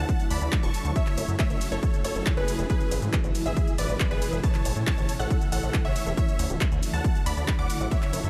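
An overdriven, heavy, up-front electronic kick drives this soaring, euphoric uplifting trance excerpt at 138 BPM alongside an overdriven analog drum machine of handclaps, hi-hat, ride cymbal and shaker, a gritty, nasal, distorted synth bass, huge detuned supersaw chords with lush chorus, delay and sidechain pumping carrying the melody over Dadd9, F#m7, E/G# and A, and a bright, punchy unison pluck with a filter sweep and diffuse ambient delay sitting in the background.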